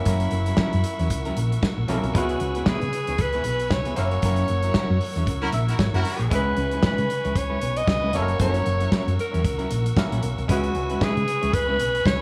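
A breathy alto saxophone carries the melody from the opening moment, up front and smooth on top with a light vibrato, over a glamorous, danceable disco groove with a gentle swing. A twangy, stringy clav sits in the background alongside reedy organ chords treated with chorus vibrato, while a clean semi-hollow electric guitar adds dark, fingered accompaniment. The dry 70s drum kit, with its tight kick and medium-tuned snare, and a round, punchy hollow-body bass anchor the bottom end, both up front in the mix. Around 4.2 seconds the band hits an accent, and a distant, roomy horn section punches in with brief stabs from 5.4 to 6.3 seconds as the clav slips in a fill. The harmony sways between F#7 and C#m7 throughout this short cut from a longer piece, all set in a light, small-room reverb.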